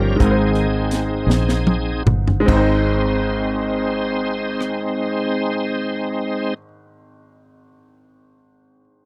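A shouting, lightly overdriven tonewheel organ on a slow rotary speaker with chorus vibrato leads this hopeful, reverent slow gospel fragment in 6/8 and Ab major at about 47-59 BPM, taking a solo over the opening slowdown as a tight funk drum kit with bright cymbals and a high-tuned snare plays a fill from 1.3 seconds, while a foam-muted fingered electric bass sits up front and a brilliant grand piano with short sustain carries on alone once the organ and bass stop at 6.5 seconds, captured in a dry, close 1970s-style studio sound.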